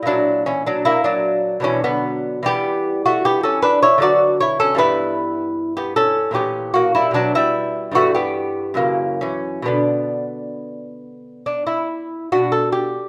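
A solo lute sits up front in a moderate recital hall reverb, its gut and double strings giving a delicate, fingerpicked sound with some octave-doubled courses. This is a classical, baroque-style dance in 3/4 and B minor, serene and radiant, moving with a rubato feel between 65 and 78 BPM. Cut from a longer piece, it plays for 13.1 seconds over a range from F#2 to D5, passing through harmonies such as Em, A#dim7 and F#7 before settling on Bm at 9.7 seconds.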